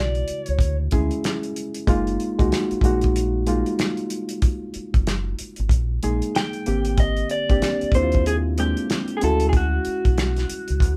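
A slightly broken-up electric guitar through a small old amp carries the melody, its picked, compressed, lo-fi tone sitting up front. It sounds briefly at the opening, falls silent at 0.8 seconds and returns at 6.4 seconds to carry on to the close. This soulful, smooth R&B and neo-soul passage, cut from a longer piece, moves at 94 BPM in 4/4 with a swung sixteenth-note feel. Beneath the guitar, a reedy, worn electric piano plays clean accompaniment through its built-in speakers, slightly out of tune and also up front, over chords moving from Dmaj9 to F#maj9, G#maj9 and back to Dmaj9. A deep dub fingered electric bass gives a dark, round, punchy low end, while a dry, damped 70s acoustic kit with a tight kick, medium-tuned snare, hi-hat and finger snaps sits up front. The band plays live together in one small room with moderate reverb.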